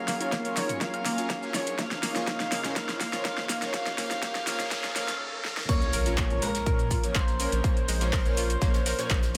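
Progressive house at 123 BPM in Bb minor, this driving, emotional excerpt builds over Gbmaj7 and Dbadd9 before dropping onto Bbm at 5.7 seconds. A smooth, expressive sawtooth lead carries the melody with portamento, vibrato, lush chorus, tape echo and sidechain pumping, while a thick, warbling unison pad holds very quiet sustained chords until 5.2 seconds. Underneath, a detuned analog pluck spins arpeggios through a filter sweep, a mellow supersaw adds phased stabs, and a round, dark, wave-folded bass anchors the low end. The punchy, overdriven kick sits up front with a deep house kit of fat snare, metallic hats, handclaps, shaker and crash, joined in the background by dry, overdriven electronic congas, toms and woodblock until 4.9 seconds. The build-up brings a drum fill, a noise sweep and riser, and a brief stop before the drop lands with an impact, where a gentle FM bell line and a very quiet brushed acoustic kit enter in the background of the groove, all set in light reverb.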